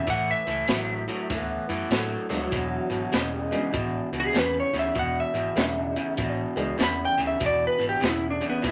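Electric blues shuffle at 98 BPM in E mixolydian, rollicking and swaggering, with a dark, compressed, slightly broken-up lead guitar carrying the melody up front over a twangy guitar riff through a small old amp, a round, foam-muted fingered bass and a gritty, saturated breakbeat kit with a tight kick and rolled-off top. A breathy tenor saxophone with light vibrato and scooped notes adds a mellow second line from 1.3 to 4.1 seconds, while a detuned, jangly honky-tonk upright piano comps from 2.3 to 6.8 seconds. The chords move from A5 to E7, with light reverb around the band in this fragment cut from a longer piece.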